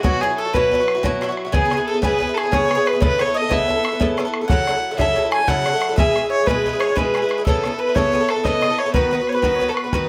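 A nasal, reedy gut-string fiddle carries the melody up front in this lively, cheerful Celtic slip jig in 9/8 at 121 BPM in B mixolydian, with a metallic picked Irish bouzouki supplying the accompaniment alongside it, a bright bowl-back mandolin playing a very quiet second line, and a boomy, open bodhran providing the percussion, all captured with close, detailed microphones and light reverb in a short section cut from a longer piece.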